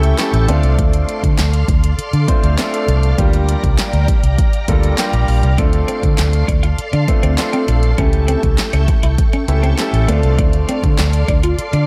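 Bittersweet yet energetic, this short dance-pop excerpt in D minor moves at 100 BPM in a straight 4/4, cycling through Dm7, Bb6 and A7. A punchy, tape-tinged analog drum machine with handclaps, hi-hat, kick and snare drives it alongside an up-front, round, foam-muted fingered electric bass, while a clear concert grand piano with audible action noise and a warbling, organ-like ensemble string pad pulse under sidechain pumping. At 5.6 seconds a bright, twangy twelve-string electric guitar joins with a riff drenched in lush chorus, all set in a digital ambience.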